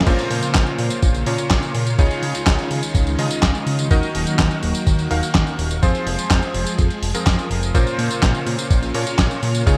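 Nostalgic and bittersweet, this italo disco excerpt moves in a straight 4/4 feel, its chords cycling from Bbmadd9 through Dbadd9, Ebm and Fm before returning home at 7.7 seconds. A thumpy, gritty electronic kick enters at 0.1 seconds alongside a dusty, sampler-style soul kit of medium-tuned snare, handclaps, hi-hat, tambourine and crash cymbal, tape-toned and up front with studio and gated reverb. Underneath, a fat analog bass blends sawtooth and square waves into a thick, detuned, mellow tone with a moving notch, fast attack and tube saturation. A bright, cutting electric grand piano with a clangy low end punches out vintage stabs through analog chorus and digital delay. In the background, a swirling, warbling string machine holds slow-attack chords with a long release, colored by ensemble chorus and phaser, all framed by light reverb and a bright 1980s-style digital production.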